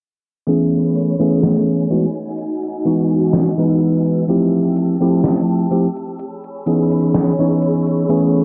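A clean, up-front tine electric piano, colored by analog chorus and delay and heard through a combo amp, carries the accompaniment in this nostalgic, faded vaporwave excerpt at a slow 63 BPM in A lydian, moving through Amaj9, Emaj9, Fmaj9 and C#m7. A silky, mellow string machine holds sustained chords beneath it with slow attack, long release, phaser and ensemble chorus, while an up-front, sampler-style 80s drum machine plays hi-hat and snare treated with gated reverb. The whole track has a dry, gritty cassette character with light digital ambience, a low-pass filter and a filter sweep running from 0.5 to 8.4 seconds.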